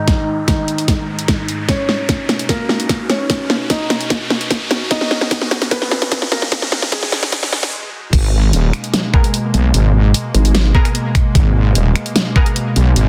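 A soft, muted felt piano melody and a bright, morphing wavetable pad with ensemble chorus and sidechain pumping open this aggressive, heavy wobble dubstep cut in G# minor at 149 BPM half-time, as an electronic riser, a drum fill of huge snare, bright hats, finger snaps and crash over a knocking kick builds to a brief stop at 7.7 seconds. Then at 8.1 seconds the drop hits with a saturated, detuned sawtooth wobble bass up front, followed by punchy orchestra-hit-like synth stabs with tape echo entering at 9.1 seconds and a dark, nasal vowel-sweep wobble bass bursting in at 10.3 seconds, all within a dense, heavily limited mix.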